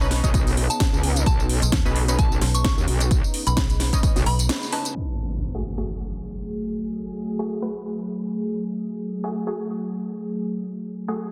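This aggressive, bouncy bass house excerpt opens in the middle of a drop, with a sweeping resonant pad holding full-bodied sustained chords under bold, nasal orchestra-hit-like synth stabs that carry their own reverb plus a delay. Up front, a dark, digital FM bass and a saturated, wobbling bass thickened with chorus drive the low end alongside a punchy electronic kick. A house kit adds a cracking snare, metallic hats, tambourine and crash cymbal, their tops softened by low-pass filtering. A soft, pure synth bell with chorus and delay sits in the background, while the pad, stabs and both basses pump against the sidechain. As the basses and drums fall away, a band accent marks a brief break, and an electronic impact hits at 5.0 s. The stabs carry on while the pad rides a long filter sweep until 11.3 s, all within a dense, heavily limited mix with light digital ambience.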